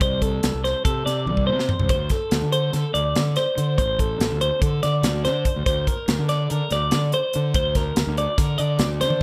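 A bright, twangy twelve-string electric guitar plays clean picked arpeggios up front, its compressed tone wrapped in spring reverb and slapback echo, in this restless, wistful excerpt of math rock and midwest emo in 9/8 at 287 BPM in eighths, in G minor. Beneath it, a dark, round fingered bass growls with fuzz and overdrive, while a polished, airy fusion drum kit with a punchy kick and medium-tuned snare drives the odd metre and throws in a fill from 1.3 to 1.9 seconds. The harmony moves from Amadd11/C to D5 and then to a rootless Gm/D, all set in a light room reverb.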